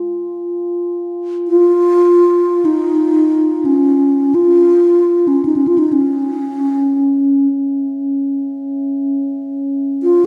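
Peaceful and spacious, this free-time world meditation excerpt opens on a soft, ethereal bed of glass harmonica with slow-blooming attacks, joined at 1.5 seconds by a breathy, hollow bass flute played up front with a straight, tongued tone and a slapback echo, all bathed in a wet plate reverb.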